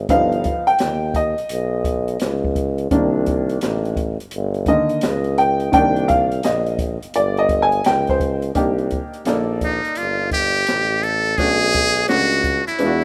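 A swung sixteenth-note groove in 4/4 carries this cool, mellow jazz-hop passage cut from a longer piece: a soft-edged, distant tuba with light vibrato and scooped notes holds the bass, a woody, slightly detuned vintage upright piano takes a solo through the first 8.6 seconds, a dark, smooth acoustic jazz kit with a punchy kick and medium-tuned snare keeps time on hi-hat, kick and snare, and a buzzy, thin trumpet in a metal mute enters at 9.6 seconds with vibrato and scooped notes, set in a small room with light reverb and a rough home-demo mix.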